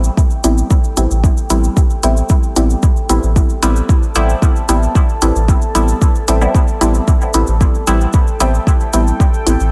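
Set in a light digital ambience, this hypnotic, deep dub techno cut pairs an up-front electronic kick and smooth hi-hats with a round, soft sub bass pumping under sidechain, muted sawtooth chord stabs smeared by chorus, phaser and dub echo, a dark, slow-blooming ambient pad of sustained detuned chords, a very quiet warbling lo-fi pluck riff, and a grainy, bright cabasa, over a single Am7 chord.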